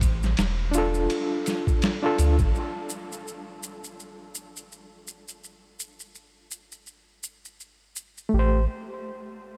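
A swung 83 BPM trip hop groove in A minor opens on a compressed, pitched-down boom bap kit with a thumpy kick, ride and medium-tuned snare under a deep, round dub sub bass, joined at 0.7 seconds by a reedy, overdriven electric piano with tremolo and tape echo over Dm, until the drums, bass and piano drop out around 2.5 seconds and close, dry maracas carry on alone until 8.3 seconds, when the bass and piano return briefly on Am7, all melancholic and hypnotic in a dreamy mix soaked in a huge reverb with a faint mains hum.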